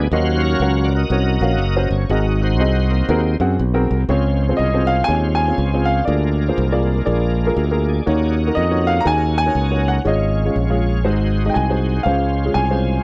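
A dry, close 1970s-style studio sound with small-room ambience frames this hopeful, reverent uptempo gospel in Db major at 121 BPM with a swung 4/4 feel, where a woody upright piano comps, a growly, punchy fingered electric bass sits up front, and a shouting, lightly overdriven tonewheel organ with key click, chorus vibrato and slow rotary speaker sustains chords and takes a solo until 4.1 seconds, before an intimate grand piano with audible action noise and slapback echo enters with the melody at 4.6 seconds.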